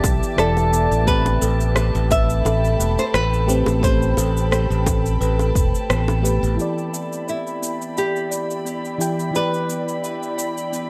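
Lightly reverberant and relaxed, this sunset chillout excerpt is led by a fingerpicked flamenco guitar with audible finger squeaks and delay, over a round, chorused FM electric piano with tape echo, an ethereal ensemble-chorused pad, and a faint glassy texture of drifting overtones, all moving between Em7 and Am9 with a gentle swing. A growly, up-front fingered electric bass, a punchy overdriven electronic kick, overdriven electronic cabasa and rim click, and soft, high-tuned bongos tucked in the background carry the groove, though the kick drops out at 5.7 seconds, the bongos at 6.2 and the bass at 6.6. From that last point a filter sweep moves across the woody, background kalimba arpeggios, which are darkened throughout by a low-pass filter and trailed by tape echo.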